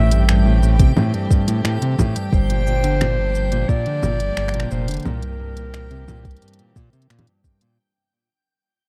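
A soft, up-front electronic kick anchors this pastoral folktronica excerpt from 0.8 s, beneath a deep, round analog bass, dark fingerpicked nylon-string guitar arpeggios with audible finger squeak, crisp hats, congas, finger snaps and shaker from an organic electronic drum kit, smooth bowed string quartet chords with vibrato, a warm solo clarinet melody carrying tape echo, and a reversed, dreamy granular texture glimmering in the background, captured as a dry, close 1970s-style studio recording that fades out from 0.5 s over Am7, Gm7 and C7.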